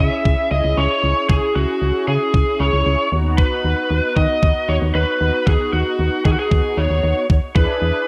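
Bright 1980s-style digital production bathed in a lush hall reverb frames this cool, melancholic synth-pop fragment at 115 BPM, cut from a longer piece and moving from C#m through B/D# to a closing E7. An overdriven, lo-fi electric lead guitar through a small cranked amp carries the melody up front, over a mellow, brassy synth brass bed with detuned sawtooth tone, ring modulation, a filter sweep and chorus. A punchy, round FM bass and a thumpy, tape-tinged sampler-style kick that enters at 0.3 seconds anchor the low end.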